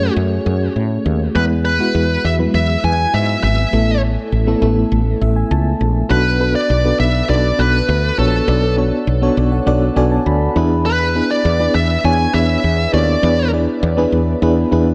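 Dramatic and urgent, this short excerpt from a longer 1980s-style pop piece moves in a straight 4/4 groove under a dark production with light reverb. A bluesy overdriven lead guitar carries the melody, its distorted, picked tone thickened by tape echo, and it drops out at 13.5 seconds while the other parts continue to the end. Beneath it, an FM electric piano with tremolo supplies mellow accompaniment, its fast attack and decaying notes touched by a faint noise layer, and it steps forward with fills at 4.9 and 9.1 seconds. A woody fretless electric bass anchors the low end with a growly, round, hollow-body sound placed up front in the mix. The harmony moves from F#m through E and Asus2 before the second section opens on Bm7 at 6.1 seconds and later turns to E7.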